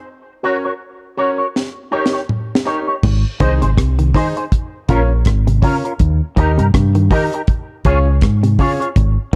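Cut from a longer roots reggae piece with a sunny, uplifting mood, this opens at 0.4 s with a twangy, clean, picked electric guitar through an envelope filter, ensemble chorus and tape echo, beside stabs from a brilliant, woody upright piano with audible action noise. A deep, dry drum kit with a high-tuned snare and tight kick enters at 1.6 s with a fill, and a round, dark fingered bass lands up front at 3.0 s, joined by fingered arpeggios from a compressed hollow-body electric guitar with spring reverb sitting in the background, in a small room with a dark, warm production.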